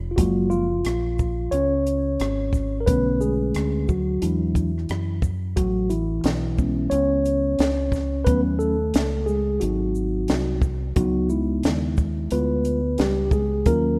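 A jazz-hop cut of hip hop, smoky and mellow, moving in 4/4 with a swung sixteenth-note feel, taken from a longer piece. A mellow tine electric piano carries the lead as a solo from 0.0 to 14.0 seconds, its clean, direct tone sitting up front while it moves through jazzy chords such as F#maj9, Amaj9 and C#m9 before landing on Ddim7. Underneath, a deep dub fingered electric bass gives a round, dark foundation, amped and close in the mix. A compact cocktail drum kit enters at 0.2 seconds with hi-hat, kick, rim click, shaker and a high-tuned snare, its punchy kick and rolled-off top giving a smooth, small-room character. The rough home demo mix is bathed in a moderate, lush hall reverb that lends the intimate parts a spacious glow.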